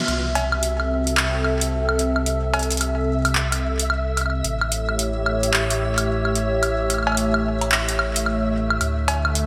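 IDM at 110 BPM in 4/4 with a 62% swing on the sixteenths, this eerie, intricate passage is cut from a longer piece and sits in a single section with a band accent at 0.0 seconds. A hollow, soft pad with a flute-like, airy character holds sustained chords up front, its detuned square, triangle and sine layers and a breath of noise opening slowly and trailing off with a long release through chorus. Beneath it, a warm, round sine sub bass enters at 0.1 seconds with a fast attack and mellow sustained notes, while a booming analog drum machine, also up front, plays cowbell, handclaps, metallic hi-hats and woodblock with a tape-warm edge, gated reverb and delay. From 0.7 seconds a flickering, grainy granular texture fades in slowly on a high E5, its detuned triangle tone bathed in its own reverb and analog chorus. The harmony moves from C6 to A7 to D, and the whole mix carries a bright 1980s-style digital production inside a wet plate reverb.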